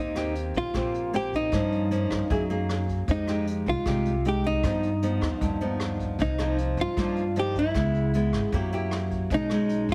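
Heavily compressed, radio-like sound with light reverb frames this relaxed, sunny bossa nova excerpt, cut from a longer piece and moving at 154 BPM in a straight 4/4. A dark, clean hollow-body jazz guitar carries the melody up front, picked within a narrow span from Eb4 to G4, its tone compressed. Beside it, a fingerpicked nylon-string guitar with fresh strings supplies the classical-style accompaniment, warm and close, reaching from G2 up to Ab4. Underneath, a woody yet bright upright bass with steel strings plays pizzicato between Ab1 and G2, while a vintage brush drum kit enters at 0.2 seconds, sitting distant and roomy in a small room with a punchy kick, rim clicks, hi-hat and a rolled-off top. The harmony drifts through rich, colorful chords such as Eb6, Gm7b5, Fm9 and Gaug7, passing through Cm7 and Gb7b9 before landing on B69 at 9.3 seconds.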